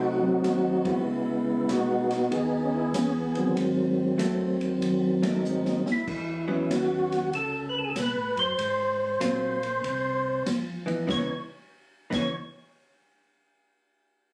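A percussive tonewheel organ carries the melody up front with a round, mellow tone, chorus vibrato, slow rotary speaker and plate reverb, over a clean, compressed hollow-body electric guitar accompanying and a smooth tonewheel organ bass, with an open acoustic jazz kit of dark cymbals, medium-tuned snare and boomy kick entering at 0.4 s in this bluesy, smoky soul jazz organ trio clip, swinging at 96 BPM in C# minor through chords such as G#7b9, C#m9 and A69, marked by band accents and a drum fill at 5.4 s, and captured on a phone in a studio room with moderate reverb.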